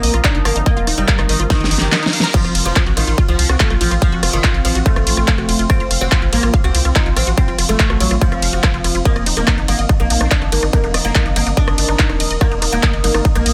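A woody, plectrum-plucked oud opens this driving, intense psychedelic trance excerpt at 143 BPM in a straight 4/4. It plays the melody through a phaser and digital delay, with sidechain pumping. Around it from the start sit a round, dark analog bass, a lush detuned sawtooth unison pluck riff that also pumps and echoes, and a big-room dance kit with a huge snare, claps, hi-hat, ride, rim clicks and crashes. A punchy, up-front electronic kick lands at 0.2 seconds. Underneath, two very quiet pads fill the space: an evolving, warbling wavetable pad holding sustained chords, and a deep, moody ambient pad with a sub octave. A drum fill from 1.5 seconds and a brief reverse cymbal at 1.9 seconds lead into the harmony shifting from Eb5 to F5, and a very quiet, nasal vowel-sweep wobble bass adds a second line in two short bursts, the first at 3.5 seconds.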